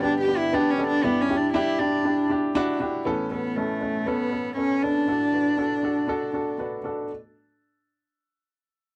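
Pop in D major at 119 BPM with a gentle sixteenth-note swing, hopeful and warm in mood, in which a single intimate bowed cello carries the melody sul tasto with an airy bow and light vibrato over a woody upright piano whose action noise is audible, both up front in a dry, close 1970s-style studio sound touched by light reverb, as the harmony moves from G and Em7/G to Aadd9 and D/A before the cello stops at 6.6 s and the piano continues to 7.1 s.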